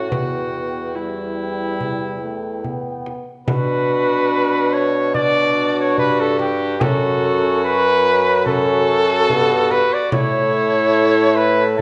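A mellow, distant cornet leads this courtly, rustic Renaissance-style consort dance at 72 BPM in a straight 4/4, carried over a gut-string viola second line, a close-miked trombone, a warm bassoon bass and a small, bright frame drum played with soft hands, moving from E minor through B minor and F-sharp minor to A major in a reverberant recital hall, in an excerpt cut from a longer piece.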